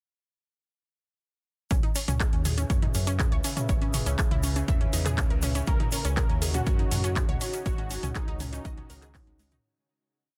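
Melodic techno in C# minor at 121 BPM, dark and hypnotic, it drops in at 1.7 seconds with a punchy four-on-the-floor kick, metallic programmed hats, claps and low toms, a grainy hand-played shaker in sixteenths, a round, deep dotted-rhythm bass and a detuned, bright pluck running a 32-step arpeggio sequence through chorus, delay and sidechain pumping. A moody, slow-attack ambient pad with built-in reverb and a resonant, wave-folded drone of moving overtones settle in the background over C#m7, and at 5.7 seconds the harmony shifts to D#m7/C# as a fat, mellow, vibrato-tinged lead riff arrives with ensemble chorus and delay, joined by very quiet, brassy open-voiced chord stabs. The dense, heavily limited mix stays dry, and the whole piece fades out from 7.0 seconds.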